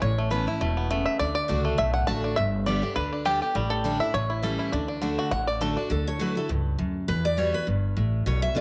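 Lively and virtuosic, this bluegrass excerpt in D major races along at 204 BPM in 4/4 with a swung eighth-note feel. A twangy, percussive five-string banjo played with fingerpicks takes the lead over a full-bodied picked dreadnought guitar and a woody, growly pizzicato upright bass. At 5.9 seconds the banjo stops and a bright, up-front steel-string guitar takes over the melody, all set in a small room with moderate spring reverb.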